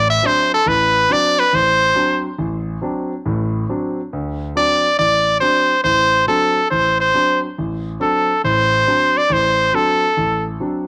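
Searching and spiritual, this brief swinging jazz fragment, cut from a longer piece, puts a brilliant, punchy trumpet up front with forceful vibrato-laden solo lines over a warm, natural grand piano accompaniment, both carrying the soft grit of a cassette home recording with a moderate spring reverb.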